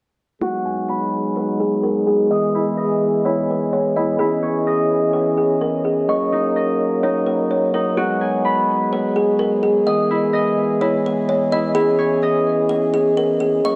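At 127 BPM in 4/4 with a half-time feel, this melancholic, ethereal hip hop excerpt in G# minor drifts through a progression of G#m7, Emaj7, C#m9 and D#m7, then returns to G#m7, Emaj7 and C#m9. From 0.4 s to 13.8 s, a woody, dark kalimba carries the melody, its soft, ringing thumb-plucked notes softened by a low-pass filter and trailed by tape echo. Beneath it, a mellow French horn section holds sustained chords in a tight, classical style, sitting up front with light vibrato and a smooth top. A bright acoustic Celtic harp adds ringing arpeggios, placed lower in the mix and likewise shaped by a low-pass filter and tape echo. A filter sweep runs across the whole passage, and a lush hall reverb with a 2.8-second decay gives the sound a spacious, dreamy depth.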